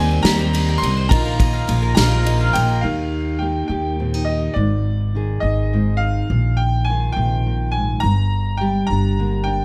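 A bright, brilliant upright piano carries the melody with long plate-reverb sustain over a woody pizzicato upright bass, a shimmering octave-doubled twelve-string guitar in the background, round mandolin arpeggios, a reedy, breathing harmonium and a soft, dark felt-muted piano with audible action noise, while an unplugged drum kit with punchy kick, ride and snare played with bundle sticks joins at 0.2 seconds. This anthemic, uplifting indie folk excerpt moves in a straight 6/8 at 69 BPM in Bb mixolydian, and the felt piano plays a brief fill before the fuller opening group drops away at 2.8 seconds. From there a fingerpicked steel-string acoustic guitar sits up front beside the piano and bass as the harmony moves through Eb, Ab, Bbsus4 and Gm.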